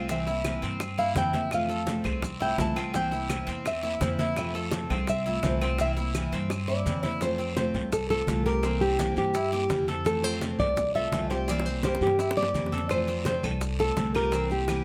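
A thumb-plucked nylon-string guitar carries the melody up front from the very start, its finger squeaks audible, over a full-bodied picked steel-string acoustic guitar, metallic double-strung arpeggios from a Cuban tres and a dark, thumpy pizzicato upright bass, in a sunny, danceable Cuban son and guajira groove at 169 BPM in F major, cycling between C7 and Fmaj7. Just after the start the percussion enters: a close, raspy guiro, and in the background round, low-tuned bongos struck with hard hands, bright thin-skinned congas and grainy maracas, with distant woody claves that drop out around 6.7 s and return at 12.9 s. A drum fill at 6.5 s closes the opening guitar solo and ushers in the second section, and the close, detailed sound with light reverb leaves this cut from a longer piece feeling intimate.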